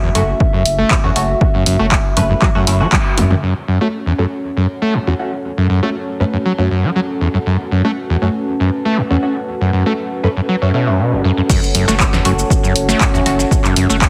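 A raw, gritty acid house piece at 119 BPM in F# minor opens on a squelchy, distorted acid bass riff over a moody, detuned analog pad, joined by bright, band-passed chord stabs dressed in phaser and lush chorus, a punchy analog drum machine, a dry electronic kick and a deep saturated sub bass with sidechain pumping. After a drum fill, the drum machine and sub fall away at 3.4 seconds as a warbling, lo-fi tape-like pad enters and a filter sweep runs over the stabs, until the kick and drums return for the drop at 11.5 seconds, with the sub following just after. The heavily compressed, radio-like sound carries light digital ambience.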